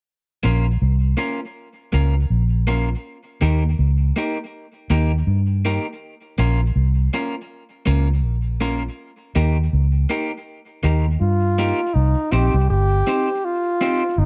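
A dry, close 1970s-style studio sound frames this serious, hypnotic roots reggae fragment at 81 BPM in Bb dorian, with a swung sixteenth feel over chords moving between Bbm and Eb before shifting to Cm at 11.9 seconds. A dark, round, foam-muted electric bass sits up front from 0.4 seconds, while a slightly broken-up, compressed, picked electric guitar accompanies further back, colored by harmonic tremolo and tape echo. At 11.2 seconds a bright, punchy solo trombone with light vibrato and a smooth top enters up front, its pop-style melody trailed by tape echo.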